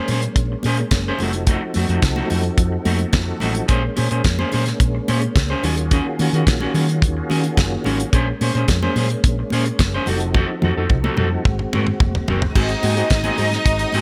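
Studio reverb gives this driving, danceable disco excerpt in Bb minor at 108 BPM a roomy sheen, while the damped 70s drum kit sits up front with a fat snare, tight kick and rolled-off top. A dark, round hollow-body bass, a slightly broken-up electric guitar, a clear tonewheel organ holding chords through chorus vibrato and a slow rotary speaker, and very quiet high-tuned congas carry a Bbm9, F7b9 and Ebm11 progression. A drum fill starts at 10.3 seconds, and at 12.5 seconds an intimate bowed string section enters with light vibrato and a soft sul tasto attack.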